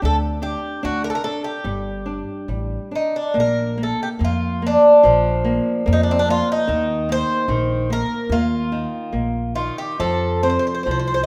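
Fado-style ballad, mournful and passionate, moving freely at 68-76 BPM in 2/4 and settling into Bb major from 3.3 s. From the opening moments the up-front Irish bouzouki carries the melody with metallic, picked double strings over fingerpicked flamenco guitar accompaniment and a woody, dark pizzicato upright bass, all set in a wet recital hall reverb in this short cut from a longer piece.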